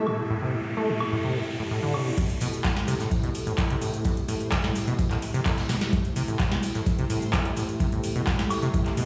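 Playful and trippy, this acid house excerpt at 128 BPM in 4/4 opens on an electronic riser over a lush, vintage string machine holding sustained Am7 chords with ensemble chorus and sidechain pumping, while a rubbery, resonant sawtooth acid bass riff with a filter sweep, overdrive and analog delay sits up front, and a booming analog drum machine with a crisp snare, metallic hats, handclaps, shaker, woodblock and crash cymbal comes in at 0.1 seconds. At the drop at 2.2 seconds, an overdriven, deep electronic kick drum lands up front, joined by a distant soft brush drum kit with hi-hat, snare and tambourine in the background. The whole mix plays as if on a big sound system in a bare stone room, with moderate spring reverb adding to the sense of space.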